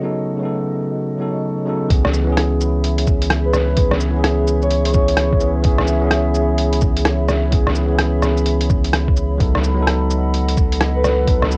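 Swung sixteenths carry this melancholic, ghostly future garage excerpt, where a bright, bell-like tine electric piano and a warbling, detuned pad with phaser and 12-bit sampler grit both pump from the start over a faint reversed, granular swell, until at 1.9 s a muffled, pitched-down thumpy kick, a tape-warm sampler kit of filtered hi-hat, rim click and cabasa, and a deep, round dub sub bass arrive, with a breathy, flute-like synth lead with vibrato and lush chorus entering at 3.5 s, all heard through a moderately ambient booth on cassette.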